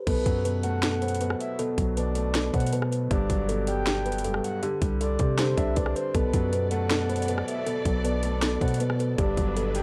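A dark, warm-toned trap excerpt in B phrygian, moving at a half-time 158 BPM, where a woody, softly plucked kalimba carries the melody alongside a breathy flute-like synth lead with chorus and tape echo, above a mellow baby grand piano, a deep sine 808 bass, and an up-front trap kit with a hard-clipped kick, sharp snare and metallic hats, before a lush, bowed string section joins with sustained chords at 6.1 seconds.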